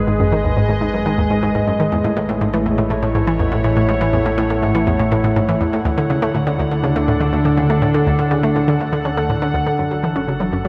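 Ambient, sequencer-driven space music at 122 BPM in a straight 4/4, this cosmic, mysterious passage cut from a longer piece is soaked in a dreamy cathedral reverb, with chords moving from G#m through A6 and D to F#m. An evolving, morphing wavetable pad sits up front with sustained, vintage chords under chorus, while a fat, saturated analog bass holds the low end and a bright, detuned analog pluck plays a riff through chorus and delay. A thumb-plucked concert harp enters at 9.8 seconds with barely audible, ringing arpeggios.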